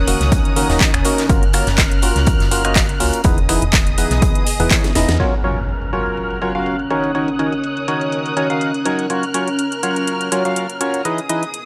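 Muted, veiled con sordino strings, a round, punchy FM bass and a deep, moody detuned pad open this joyful, euphoric piano house excerpt at 123 BPM in F# major, joined by a hollow, up-front organ stab riff, a cracking, overdriven house kit with metallic hats, finger snaps and handclaps, a layered electronic kick and a very quiet acoustic rock kit, until a drum fill from 4.8 s and a band accent at 5.1 s, after which the bass and kick drop away, an electronic impact lands at 5.2 s, and filter sweeps move across the drums and strings in a gritty, lightly reverberant hardware sound.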